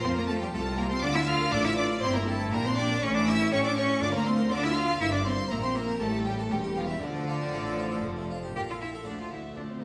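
This is a classical, baroque-style concerto movement with solo episodes, a short, festive and brilliant passage in D minor at 120 BPM in a straight 4/4, cut from a longer piece. A single bowed cello carries the solo melody with a focused tone, vibrato and a smooth top, standing forward of the ensemble. Above it, a studio violin section plays a high melodic line with light vibrato, while a chamber violin section adds an even second line in the middle register. Underneath, a lush, expressive viola section and a close-miked, dry harpsichord with a full, French-style sound fill in the accompaniment, and a chamber cello section sits in the background on the bass with a distant, symphonic double bass section that stops at 9.1 s. The harmony moves from F through Dm, Gm and A7 back to Dm, then passes through Edim/G and A7 to settle on Dm again. A wet recital hall reverb with a 1.7-second decay surrounds the ensemble.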